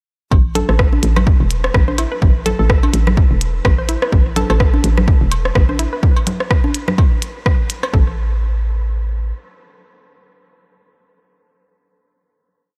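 Lightly reverberant with a tape-warm punch up front, this quirky, cool minimal techno piece at 126 BPM swings its 16ths over a four-on-the-floor electronic kick, clicky programmed hats with a rim backbeat, an overdriven layer of electronic cowbell, congas and rim clicks scattered in cross rhythm through analog delay, a hollow, bouncy FM bass in a dotted rhythm with sidechain pumping, and a mellow, detuned square-wave pluck repeating a 16-step sequence through chorus, delay and pumping, before the groove gives way at 7.9 seconds to a final note that rings out until 11.7 seconds.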